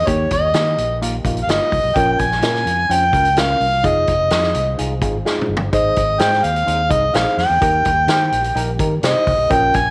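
An overdriven, gritty harmonica leads this joyful, uplifting slice of uptempo 1960s-style soul at 127 BPM, playing an up-front jazz-style solo with vibrato, scooped notes and tongue slaps, its amplified tone thickened by slapback echo. Beneath it, a punchy, bright fingered bass and a saturated vintage drum kit with a tight kick and rolled-off top drive the straight 4/4 groove, with a drum fill at 5.3 seconds, while a reedy electric piano through a phaser adds accompaniment. A very quiet, round tonewheel organ on fast rotary speaker holds sustained chords over the Eb, Bbm, Fm7 and Ab progression, all in light small-room ambience.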